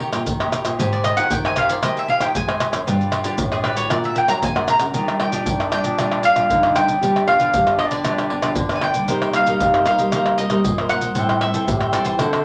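This bittersweet, yearning samba and choro excerpt opens with a crisp cavaquinho and a bright fingerpicked nylon-string guitar in the background, a thumb-plucked nylon-string bass with fresh strings, and up-front pandeiro, maracas, tamborim and deep surdo played with soft hands in a small room; a round, double-strung picked mandolin takes the lead at 0.9 seconds, and from 4.9 seconds a mellow, whispered jazz trombone with light vibrato adds an intimate, breathy second line, all set in a club reverb with tube saturation.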